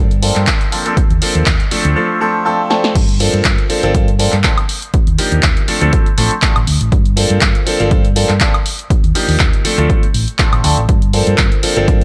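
Light digital reverb frames this funky, nostalgic filtered disco house cut at 121 BPM in G minor, with a gently swung 16th feel. A round, dark hollow-body electric bass, filtered and pumping against the sidechain, opens a build-up with a filter sweep. It is joined at 0.1 seconds by a punchy analog drum machine of handclaps, hi-hats, snare, woodblock and crash, then at 0.2 seconds by a bright, polished baby grand piano with phaser, also filtered and pumping, and by a dry electronic kick at 0.5 seconds. After a drum fill at 2.7 seconds, the drop lands at 3.0 seconds, cycling through Gm11, Ebmaj9 and Dm7 chords.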